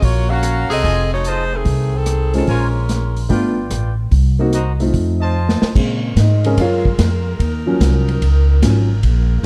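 Dry, with a dark, warm production, this excerpt from a longer big band swing piece moves at 147 BPM in Bb minor with a brassy, swinging mood. A woody, pizzicato upright bass sits up front throughout, while a vintage drum kit in a small room adds dusky cymbals, a tight kick, a medium-tuned snare and rim clicks. A bright, tight saxophone section with vibrato carries the opening melody, and a trumpet section with light vibrato punctuates it with present stabs. A worn concert grand piano, natural-sounding with deep bass and short sustain, enters at 2.3 seconds as accompaniment. After a drum fill at 5.3 seconds, the piano takes a solo from 5.8 seconds over a softly attacked, clear saxophone section holding sustained chords through changes that move from Gbmaj7 and F7#9 toward Bbm7 and Ebm7.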